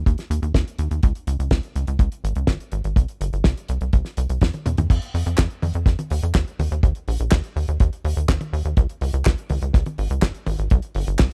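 A tight, punchy sequencer bass with a saturated, wave-folded sawtooth tone and a plucky filter opens this danceable, nostalgic italo disco cut at 124 BPM, joined at 0.1 s by an up-front acoustic kick and a damped 70s kit of hi-hat, handclaps, crash, toms and a fat snare, whose drum fill at 4.5 s leads into a new section in a dry, close studio sound.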